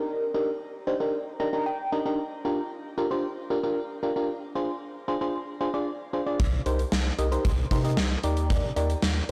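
In straight 4/4 at 114 BPM, this short synth-pop fragment cut from a longer piece has a cool, nocturnal mood, with chords moving from Ebmaj7 through Gm7, Dm7b5 and Cm7 before landing back on Ebmaj7. An FM electric piano opens alone with mellow, warbling, vintage tones that strike quickly and then decay, colored by phaser and a shimmer reverb, and it plays a short fill between 1.1 and 2.2 seconds. At 6.4 seconds a gated 80s drum kit enters with hi-hat, a tight kick and a medium-tuned snare, sounding bright, airy and polished in a stone room and sitting up front. A round analog bass joins at the same moment, deep and dark with sustained sine-like notes and a touch of transformer saturation. A lush hall reverb surrounds the mix, while the recording itself is blown-out and overdriven, giving the sleek late-night sound a gritty edge.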